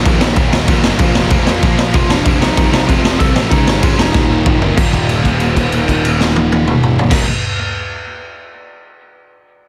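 Punk rock with a rebellious, upbeat drive, cut from a longer piece: a raw, gritty, saturated garage drum kit with a boomy kick sits up front over two picked riffing electric guitars, one bright and distorted, the other sludgy and overdriven, plus a growly fuzz bass, while a twangy, lightly driven lead guitar with delay enters at 2.0 s, and a drum fill at 4.1 s leads into a held note from 4.8 s, in a dense, dry, heavily limited modern master.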